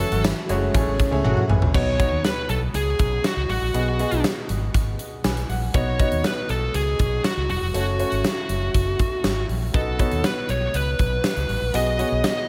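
1980s-style pop at 120 BPM in B mixolydian, uplifting and glossy, with an up-front, dark fuzz lead guitar carrying the melody through tape echo and shimmer reverb over a clear grand piano, a round, foam-muted fingered bass, and a punchy big rock kit in gated reverb, while a swirling phased string machine and funky filter-plucked polysynth stabs colour only the opening 1.7 seconds before a drum fill at 1.2 seconds leads into chords moving between B, G#m7 and F#m.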